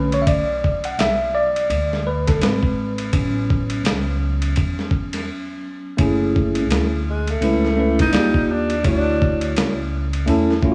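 Cool and mellow, this jazz-hop excerpt sits at 84 BPM in F# minor with a gentle 16th-note swing. A clean tine electric piano, played through its built-in speakers and kept up front, carries the opening as a solo over Bm7 and A6. A woody pizzicato upright bass holds the low end beneath it, while a dusty soul sampler-style kit adds gritty, overdriven hi-hat, ride, a thumpy kick and a medium-tuned snare, re-recorded in a small room with 12-bit sampler crunch. A break arrives at 5.3 seconds, and from 6.0 seconds the harmony moves through F#m7, D#maj9 and Dmaj9. A breathy tenor saxophone enters at 7.1 seconds for a short, smooth-topped jazz solo with light vibrato, scooped notes and tape echo. A light small-room reverb wraps the whole piece.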